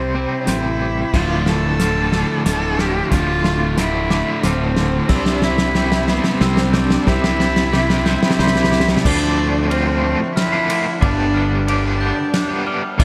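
Brooding and cinematic, this post-rock excerpt moves at 91 BPM in a straight 3/4, centred on D dorian and tuned slightly low to A4 = 438 Hz. Up front, a rich, focused solo cello carries the bowed melody with vibrato and tape echo, while a growly, punchy fingered bass anchors the low end and a loose acoustic drum kit with a fat snare and tight kick joins at 0.5 seconds. In the background, a crunchy overdriven guitar plays a riff through tremolo and slapback echo, and a bright fuzz guitar adds its own distorted riff from 1.1 to 9.0 seconds. Very quiet layers fill in the colour: a twangy, scooped clean guitar picking arpeggios and a pedal steel holding sustained chords with fingerpicks, volume swells and slide. Further back, a bell-like glockenspiel struck with soft plastic mallets rings through slapback and tape echo. The opening stretch is a build-up carried by a drum fill, cycling through Cmaj7 and Dm7 before moving to a new section at 9.1 seconds that turns from Dm7 to G7, all set in a lush hall reverb for a big arena sound.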